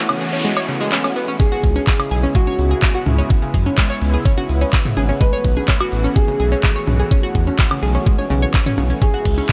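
A dry cut from a longer progressive house track, dreamy and driving in a straight 4/4, moving between B7sus4 and C#m7 chords. It opens on a short break where a background noise sweep plays over a mellow, detuned supersaw pad holding sustained chords with sidechain pumping, while a bright, nasal analog pluck spins arpeggios through chorus, phaser and digital delay, and an up-front pop drum kit adds handclaps, crisp hats, ride cymbal and woodblock. At 1.4 s a knocking electronic kick and a dark, boxy concert grand piano melody with tape echo arrive, followed at 1.6 s by a round, deep analog bass and then tape-warm electronic congas and toms sitting in the background.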